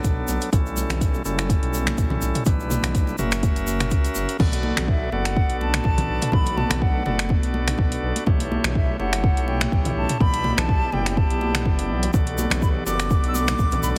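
The recording sounds dry and heavily compressed, with a dense, radio-like punch to this short cut from a longer afro house track in B minor at 124 BPM, its sixteenths carrying a light swing and its mood driving and spiritual. An up-front, deep electronic kick anchors a tape-warm deep house kit of metallic hi-hats, finger snaps, toms and crash cymbal, while bright, hard-handed congas sit in the background from 0.3 seconds and a grainy, saturated tube shaker appears at the start and again near the end. A dark, rumbling detuned saw bass and a reedy tonewheel organ playing stabs with delay both pump against the kick through sidechain compression, moving through Bm7, A7, Em7/B and F#7 before the drop arrives at 4.4 seconds. Then a silvery concert flute carries the melody with vibrato, a soft attack and expressive phrasing, its lifted highs trailed by delay. From 5.6 seconds a very quiet, ethereal pad adds slow-attack sustained chords with ensemble chorus and phaser shimmer beneath the flute as the harmony settles back onto Bm7.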